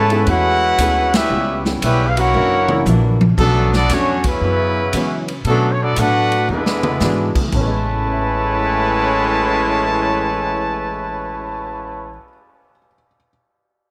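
A swung 4/4 at 116 BPM drives this energetic, brassy big band swing excerpt in A major, with a swinging drum kit whose dark cymbals, medium-tuned snare and punchy kick sit in an airy hall, adding fills from 2.4 to 3.4 seconds and again at 6.5 seconds. A woody upright bass with gut strings plays pizzicato and thumpy beneath it. Up front, a trumpet section carries the melody with vibrato and a soft attack, while a bright trombone section with light vibrato supplies a second line, and a tight, vintage-sounding trombone section holds very quiet sustained chords until 3.4 seconds. In the background, a miked and amplified archtop guitar adds dark, clean, compressed picked accompaniment, and an intimate baby grand piano with audible action noise and short sustain comps until 13.3 seconds. The band hits an accent at 1.1 seconds, and the harmony moves from Amaj9 through C#m7b5, F#7b13, Bm7 and E7 before returning to Amaj9, all bathed in a moderate echo chamber reverb.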